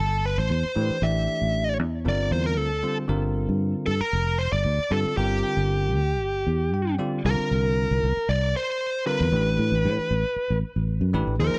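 A dry, close 1970s-style studio sound with a faint mains hum frames this intense, driving cut from a longer electric jazz fusion piece in straight 4/4. A dark, round, foam-muted fingered bass sits up front beside a smooth, overdriven, picked lead guitar carrying the melody, while a bright, bell-like tine electric piano with subtle chorus joins at 0.8 seconds and adds a fill at 6.5 seconds. The harmony moves from Am7 to Gm7, then shifts to C9sus4 and A9sus4 as a new section arrives at 7.3 seconds.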